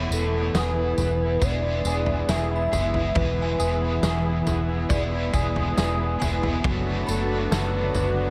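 Opening at once on an E chord that shifts to D6/F# at 6.6 seconds, this ethereal, blissful dream pop excerpt at 69 BPM in E mixolydian layers a crunchy overdriven guitar with harmonic tremolo and lush chorus, a thick, detuned sawtooth pad in the background, chorused and delayed clean electric guitar arpeggios with a twangy bite, a dark, foam-muted vintage bass sitting up front, a ringing FM synth chime, a round, octave-layered synth lead with phaser and vibrato carrying the melody from 0.1 seconds, and a loose indie drum kit with fat snare, punchy kick, tambourine and toms, all bathed in light reverb and an echo-heavy mix.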